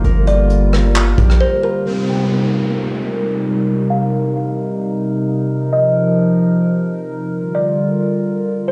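Washed in light reverb and the roomy air of a big sound system in a bare space, this ethereal, melancholic cloud-rap hip hop fragment moves in half-time, opening with a hollow, flute-like pad up front, a ringing concert harp playing arpeggios in the background, a deep sine 808-style bass and a dark brush kit with punchy kick, handclaps, hi-hat and rim clicks, before the drums and bass stop at 1.4 seconds, leaving a woody, thumbnail-plucked kalimba melody through a low-pass filter and tape echo, the chorused, sidechain-pumping pad and an electronic downlifter from 1.9 to 5.5 seconds beneath a filter sweep.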